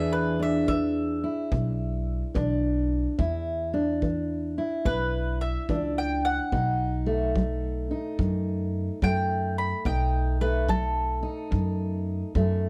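A bright, woody mandolin takes the lead from the start over a dark, fingerpicked steel-string acoustic guitar and a thumpy pizzicato upright bass with gut strings, all up front in a gritty, laid-back acoustic country blues at 72 BPM with a swung 4/4 feel. A punchy, airy, polished kick drum played with brushes joins at 0.7 seconds. The harmony sits on E7 before moving to B7 at 6.5 seconds, and a moderate studio reverb gives the cut-short passage a sense of space.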